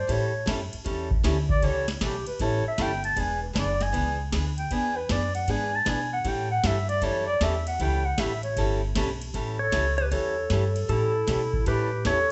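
Swinging and down-home, this brief excerpt from a longer western swing piece moves at 155 BPM in 4/4 with a swing feel on the eighth notes, centered in A mixolydian. A breathy, mellow clarinet with light vibrato, scooped notes and a whispered, intimate jazz character takes an up-front solo from the start until 9.3 seconds, over changes that move from A7 to E9 to A9. Beneath it, a woody, thumpy upright bass with gut strings plucks a dark low line, while a picked acoustic archtop guitar with fresh strings adds bright, boxy accompaniment. A booming analog drum machine keeps time, dry, with a deep kick, crisp snare, metallic hi-hats and ride cymbal. At 9.6 seconds a clean, twangy pedal steel guitar, played with fingerpicks and slide and featuring volume swells, steps up front with the melody, the band sounding live together in a large studio with moderate reverb and a soft, rolled-off top end.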